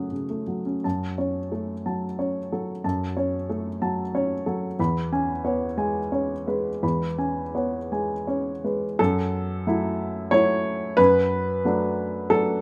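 A woody upright piano plays alone and up front, its short sustain and audible action noise giving this neoclassical minimalist piece an intimate, melancholic closeness under light reverb. In F# minor and 3/4, the rubato feel drifts between roughly 82 and 94 BPM as the harmony moves from F#m to C#m7/E, then shifts at 9.0 s into a new passage on F#m7 and Bm7/F#. Cut from a longer piece, it ends at 12.6 s.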